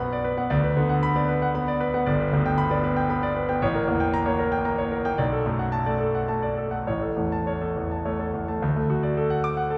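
A wet recital hall reverb, about 1.6 seconds long, surrounds this stormy, passionate piano study, heard from further back in the room. The concert grand sounds clear and polished, with a deep bass and short sustain, and it still feels present and up front within that reverberant space. Played solo in 3/4 with a free, rubato feel, this virtuoso classical passage spans the keyboard from G1 up to D6. The harmony churns from Bm through G and a tense A7b9 before settling onto Bm7 and A. At 8.6 seconds the music turns to a new section on a D chord, and this brief cut from a longer piece ends at 9.8 seconds.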